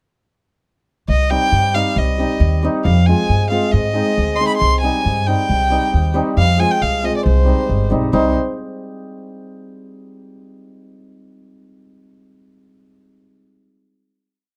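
A dark, woody bowed violin carries a modal, ornamented melody with light vibrato in this short, festive yet soulful klezmer piece in C minor, moving at 136 BPM in a straight 2/4 through C minor, F minor and A-flat. Pizzicato upright bass with a thumpy tone plays root and fifth on the main beats from 1.1 seconds, and a shimmering, ringing hammered dulcimer joins at 1.3 seconds with off-beat triad chords. The close, detailed sound keeps all three instruments up front in light reverb until a final chord at 8.1 seconds.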